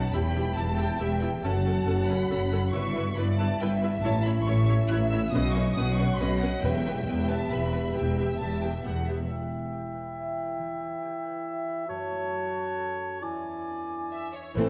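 Adventurous and determined, this cinematic passage in triple metre is cut from a longer piece and set in a dark, moderately reverberant concert hall. Lush bowed violin sections carry an expressive melody and a focused second line above intense viola accompaniment, while smooth cello and double bass sections hold the bass and a punchy, distant French horn section sustains chords. A fingerpicked concert harp rings out arpeggios through the whole passage, and timpani struck with hard mallets enter very quietly at 5.3 seconds. Around 9.3 seconds the strings and horns fall away, leaving the harp beneath an airy, woody baroque flute, a mellow clarinet and a roomy oboe playing second lines. The strings and timpani return briefly at 14.6 seconds as the passage is cut off.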